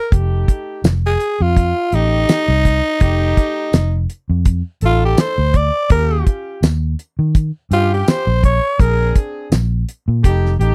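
Gritty and rollicking, this excerpt of straight-eighth soul blues moves at 83 BPM in 4/4 with a touch of sixteenth-note swing, cycling through F9, Eb9 and Bb9 chords. A raspy, growling tenor saxophone takes a jazz-style solo up front until 9.1 seconds. Behind it, a horn section holds smooth, lightly vibrato-tinged chords, a dark, round, foam-muted fingered electric bass carries the low end, and a damped 1970s drum kit plays with a fat snare, tight kick, hi-hat and tambourine, all captured in a dry, close studio sound.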